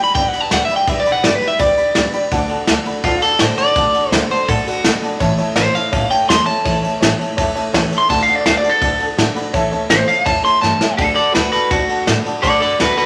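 This retro, rowdy rockabilly cut sits in a moderate large studio reverb that gives the band a roomy, natural sound. At 166 BPM in a straight 4/4 and D major, an electric guitar at the edge of break-up leads up front with a clean, picked solo until 11.0 seconds, its tone bright, twangy and scooped. A soft brush drum kit, also up front, pairs a punchy kick and a medium-tuned snare with dark ride cymbals, and a short drum fill carries the music into a new section. Underneath, a full-bodied dreadnought acoustic guitar picks the accompaniment beside an intimate, slightly detuned upright piano whose action noise can be heard. In the background, an upright bass with gut strings plays pizzicato with a woody, thumpy tone as the chords move from G to D and A before settling on D.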